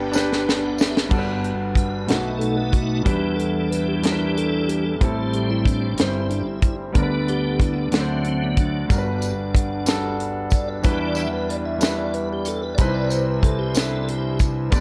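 Soulful and hopeful, this slow gospel passage in 6/8 at 62 BPM, cut from a longer piece, moves through G major chords with a piping tonewheel organ up front, its slow rotary speaker, chorus vibrato and key click carrying an opening fill that becomes a solo from 1.1 seconds. A clear concert grand piano with deep bass and long sustain sits close beside it, along with a tight funk drum kit that has a high-tuned snare and plays a fill at the start, while a mellow, distant horn section carries the melody only briefly at the opening with slapback echo. In the background, a French horn section holds warm chords, and a jingly, vintage tambourine returns at 8.9 seconds after its first appearance, all set in a light small-room ambience.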